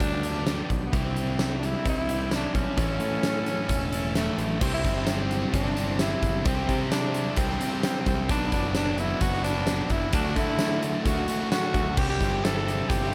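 A growling tenor saxophone leads this confident, swaggering classic rock cut at 130 BPM in a straight 4/4, its raspy, breathy tone carrying a light vibrato and a slapback echo as it sits up front with the melody. Behind it, a huge arena drum kit pounds out punchy kick, fat snare, bright cymbals, hi-hat and tambourine with a pumping room sound, while a modern picked electric bass adds a growly, direct punch underneath. Two overdriven guitars, a sludgy one with slapback echo and a cranked stack one bathed in spring reverb, churn out riffs in the background, joined at 4.6 seconds by a very quiet, double-tracked biting guitar. A shouting tonewheel organ with key click and slow rotary speaker holds sustained chords, though it is barely audible. The harmony moves from G through C and A before shifting to Cadd9, Bm7 and D, all wrapped in a lush hall reverb that gives the piece a big arena feel, cut from a longer performance.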